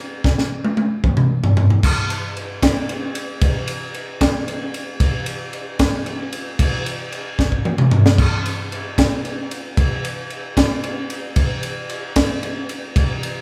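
This rock piece in 6/8 is a short passage cut from a longer work, carried entirely by a crisp fusion drum kit with a wistful, intricate mood. The acoustic kit sits up front in an airy, polished studio sound, pairing a punchy kick and a high-tuned snare with dark cymbals, while toms, ride and crash round out the set. It begins with a fill at 0.2 seconds that leads into the main section at 1.8 seconds. A second fill arrives at 7.4 seconds before the groove carries on to the cut at 13.4 seconds. A moderate plate reverb and a small room ambience lend the kit a gentle sheen and sense of space.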